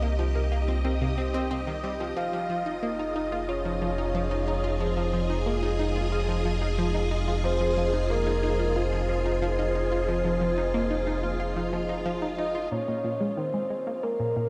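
A straight 4/4 pulse at 91 BPM carries this expansive, cosmic ambient passage, cut from a longer piece and moving from C minor to F minor. A bright, nasal analog pluck riff with phaser, chorus and delay and a lush vintage string machine with ensemble chorus sit above a round, deep analog bass, while an airy, wind-like noise texture breathes very quietly through the mix. A soft octave-layered lead with vibrato enters at 2.2 s, and at 12.7 s the bass drops out as a filter sweep arrives and the harmony turns to B-flat minor, all bathed in a huge, dark reverb.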